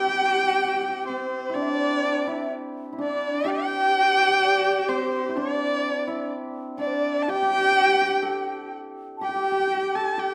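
A rich, focused erhu carries the melody up front, its bowed line colored by vibrato and portamento in this short cut from a longer Chinese traditional piece for chamber ensemble. Set in G zhi mode at a rubato 63 BPM in 2/4, the music feels pastoral and festive. Behind it, a breathy, mellow bamboo xiao adds a second line with vibrato and a crisp attack. A hammered dulcimer sounds lower with a shimmering, ringing tone, while a husky horsehead fiddle offers its own expressive bowed line with vibrato, portamento and a smooth top. All four parts play together throughout the 10.3 seconds, shifting into a new section at 1.6 seconds, and a moderate stage reverb gives the ensemble a sense of space.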